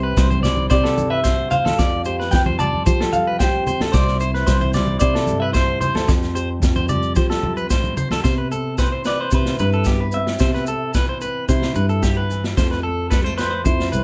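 A straight, danceable 4/4 groove at 111 BPM drives this highlife guitar band in C major, with a punchy vintage drum kit up front, grainy maracas close by and bright, compressed congas in the background until 8.2 s. A clean, hollow-bodied semi-hollow electric guitar carries the melody over thumb-plucked nylon-string accompaniment, twangy, slightly broken-up electric guitar arpeggios and a round, foam-muted fingered bass, as the chords move from C and Fadd9 to Cmaj7 at 8.2 s and Fmaj7 at 12.6 s. The band plays live together in a small room with moderate reverb, giving this cut from a longer piece a warm, natural feel.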